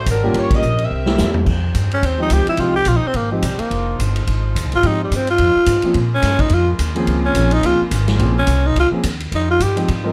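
A dark, roomy club sound frames this brassy, swinging big band jazz in F minor at 214 BPM, where a mellow saxophone section states a brief opening melody as a drum fill builds beneath it, a woody, thumpy pizzicato upright bass and a warm concert grand piano carry the accompaniment alongside a punchy acoustic drum kit, and a bright, vintage saxophone section enters at 1.5 seconds with soft-attack chords in the background while, from 1.9 seconds, a raspy, growling tenor saxophone with scooped notes and plate reverb takes an up-front solo.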